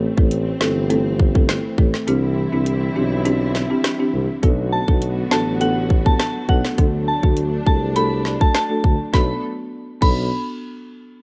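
A straight 4/4 dancehall groove at 102 BPM in B phrygian drives this hypnotic, tough cut from a longer piece, with an up-front electronic drum kit of tight kick, woody snare, metallic hats, rim click and crash, and the kick drops out between 2.1 and 4.4 seconds. Beneath it a distant, roomy tuba with light vibrato holds the bass, while a dry, rustic marimba with soft mallets and a lush bowed string section carry the Am, Cadd9, Bm7 and D chords, both pumping with sidechain. At 4.7 seconds a pure, warbling FM synth bell enters with the melody, treated with chorus and slapback echo, within a dark small-room production.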